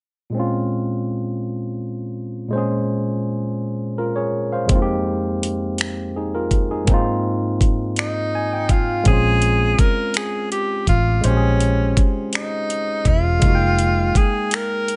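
A breathy tenor saxophone carries the melody in this yearning, late-night slow six-eight R&B excerpt, entering at 8.0 seconds with jazz-style vibrato and scooped notes over a smooth top. A barky tine electric piano played through a combo amp opens the excerpt with chords and adds a fill as the saxophone enters. An electronic drum kit with a knocking kick, metallic hats and finger snaps joins at 4.7 seconds, and a dark, foam-muted, round electric bass arrives at 9.1 seconds, all under light reverb.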